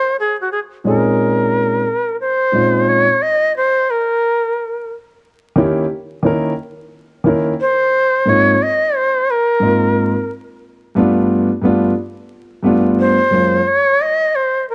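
A dim, vinyl-crackled production in a small room frames this mellow, smoky hip hop fragment at 89 BPM in Bb minor, swung on the sixteenths. A bright, reedy bamboo shakuhachi carries the melody from the start, airy with vibrato, tongued chiff and rolled-off highs. A dark baby grand piano enters at 0.8 s with a smooth, vintage accompaniment of long sustain, both parts up front in plate reverb, as the harmony moves from Bbm11 through Eb7(no3), Ab69 and G9 to Gbmaj9; the piano stops at 13.6 s and the shakuhachi plays on to 14.7 s.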